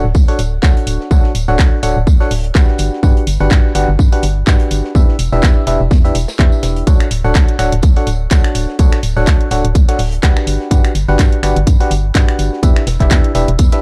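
Euphoric, uplifting piano house at 125 BPM in D major, cut from a longer piece, where a biting, barking FM electric piano riff with chorus, delay and sidechain pumping rides over a hollow, organ-like FM bass, a punchy, up-front electronic kick, a house kit of finger snaps, handclaps and hi-hat entering at 0.3 seconds, and a smooth acoustic kit of filtered hi-hat, snare and tambourine in the background, all moving through Dmaj7, Gmaj7 and Em7 in a dark, small-room production.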